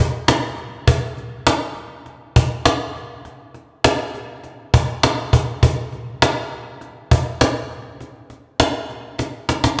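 Ethereal and blissful, this brief dream pop fragment, cut from a longer piece, moves at 101 BPM in a straight 4/4. A lone cajon carries the drum role from 0.3 seconds, its snappy, up-front snare buzz struck with hard hands, all set in a moderate concert-hall reverb with a 2.2-second decay. A drum fill closes the passage at 9.2 seconds.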